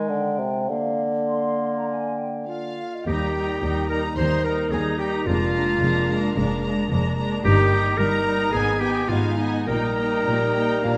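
Urgent and restless, this dramatic, fast romantic orchestral passage, cut from a longer piece, moves with a rubato feel in 4/4. It opens with a bright, up-front solo clarinet, a mellow bassoon and a small group of hollow, pure-toned flutes, whose part ends at 3.1 seconds. At that point the full string body takes over: a rich, distant violin section carries the smooth, vibrato-laden melody above a second, expressive violin line that began at 2.5 seconds, while violas with portamento and cellos with soft attacks fill the middle and low registers. Woody double basses anchor the bass, and a dark, roomy French horn section holds sustained chords in the background. The clarinet continues its second line throughout, the bassoon returns at 10.3 seconds, and the whole passage sits in the lush, wet reverb of a recital hall.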